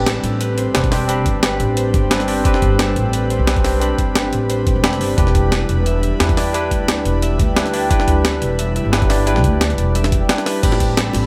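Lush and soulful, this liquid drum and bass excerpt sets a bright, barky electric piano and a ringing harp with digital delay and 12-bit grit over an airy, breathy pad, all moving between Am11 and Em7. Up front, a woody pizzicato upright bass sits beside a gritty, pitched-up breakbeat kit of snare, hi-hat, ride and crash, joined at 0.8 seconds by a thumpy electronic kick. Very quiet, low-tuned bongos slip in at 10.7 seconds near the close.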